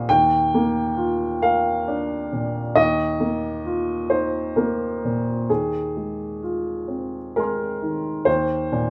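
Peaceful and hopeful, this short piece of neoclassical minimalist piano, cut from a longer work, drifts at 66 BPM in 3/4 with uneven, rubato beats in Eb major, tuned to A4 = 444 Hz, as a solo upright piano with a woody, open, up-front tone spans Eb2 to F6 through chords from Bb/Eb and Ebsus2 to Fm7/Eb before settling on Eb5 at 8.3 seconds, all set in a wet studio reverb within a rough home demo mix.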